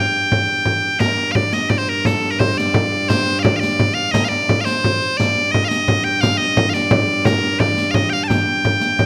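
Close, detailed microphones in a moderately reverberant recital hall capture this ancient-sounding, driving medieval dance excerpt in G minor, moving in a straight 6/8 at 115 BPM by the dotted quarter. Loud, piercing bagpipes carry the continuous melody up front from the start, over a rich, ringing drone on a low G from a single fretted viola da gamba, intimate and airy-bowed with light vibrato and a soft attack. A small, bright frame drum enters at 0.3 seconds, and a riq with dark jingles joins at 1.0 seconds, sitting distant in the background.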